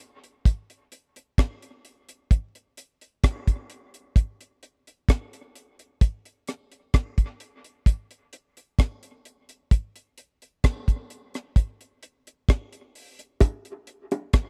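A deep, dry reggae drum kit opens at 0.2 seconds with hi-hat, rim click and a tight kick up front, holding a heavy, hypnotic 65 BPM break in straight 4/4 within a close 1970s-style studio sound, until tight, high-tuned acoustic bongos carrying dub echo slip in briefly at 13.4 seconds and stop at 14.3 seconds near the end of this fragment of a longer piece.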